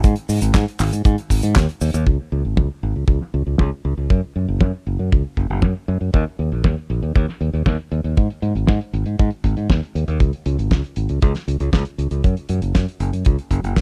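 A dry, close 1970s-style studio sound frames this danceable, bittersweet italo disco excerpt, cut from a longer piece in a straight 4/4. A tight, up-front acoustic kick drum with small room ambience anchors a damped 70s drum kit of fat snare, hi-hat, cabasa and handclaps, its polished, airy tone softened by low-pass filtering. A bright, growly fingered electric bass with tape echo sits prominently alongside, and from 2.1 seconds a filter sweep on the drums carries the groove to the end.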